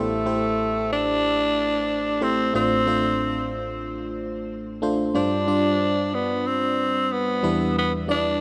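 A raspy tenor saxophone and a glassy FM electric piano open this dramatic, urgent pop excerpt together, the saxophone carrying the melody up front with scooped notes, light vibrato and a smooth top, trailed by shimmer reverb and delay. The electric piano accompanies with bell-like, decaying attacks and a chorused sheen over a noise layer, moving through Am7, Dm7/A, G7sus4 and Em7. A lush hall reverb with a long tail surrounds both parts through the full 8.4 seconds.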